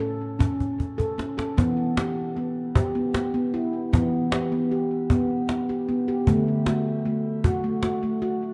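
World meditative music in a slow 6/8 at 51 BPM, this short excerpt in E dorian carries a hypnotic, meditative mood, built on handpan arpeggios spanning A2 to A4 that ring out with a nitrided-steel, airy tone under tape echo and shimmer reverb. A woody cajon with faint snares enters at 0.4 seconds, sounding compressed and saturated, and plays a drum fill from 0.6 to 1.6 seconds as the harmony moves from A to Em, later settling on D at 6.3 seconds. Both parts sit up front in a dark, warm production, surrounded by a wet echo-chamber reverb and small-room ambience.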